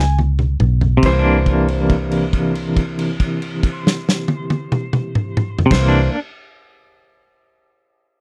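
Slow blues in 12/8 at 46 BPM, this swaggering, soulful fragment of a longer piece opens with a drum fill, a slowing of the tempo and a brief slide solo on a clean lap steel over a Db7(no3) chord. The lap steel then sits in the background with volume swells, and a held note sounds from 1.0 to 5.7 seconds over C9. Up front, a hollow-body semi-hollow electric guitar carries the accompaniment with tremolo, a round, foam-muted fingered bass anchors the low end, and a soul drum kit with dark cymbals, a tight kick, snare, toms and crash plays in a dry, close, 1970s-style studio sound.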